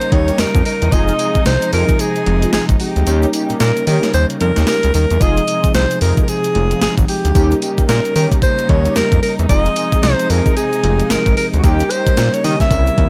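A clear alto saxophone leads this slick, bouncy new jack swing excerpt with scooped, jazz-style notes, riding over a crisp, overdriven 8-bit drum machine of thumpy kick, medium-tuned snare, hi-hat and tambourine, whose kick drops out between 3.1 and 5.2 seconds. A fat, saturated analog bass with a detuned sawtooth pluck sits up front beside it, while mellow synth brass stabs, dark and round with chorus, phaser and vibrato, punctuate the alternating Eb7 and Fm7 chords. Further back, a bell-like tine electric piano, a veiled, con sordino string section holding lush bowed chords, and a grainy tube shaker fill out a dry, close-sounding mix.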